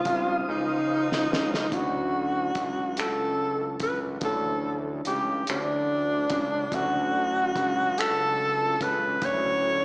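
A breathy, whispered tenor saxophone carries the melody up front in this sensual, tender slow R&B passage in six-eight, its scooped notes and vibrato trailed by a slapback echo. Beneath it sit a barky, lightly overdriven tine electric piano in the background, a fat, detuned analog bass with a filter sweep, and a cloth-damped drum kit with finger snaps, hi-hat, a tight kick and a fat, gritty snare. A smooth tonewheel organ with key click and slow rotary speaker holds chords only until 1.7 seconds, when a drum fill that begins at 0.5 seconds gives way to the second section and the harmony moves from C#maj9 to Dmaj9, all heard as a live gig through the venue's PA with recital hall reverb and a small-speaker sound.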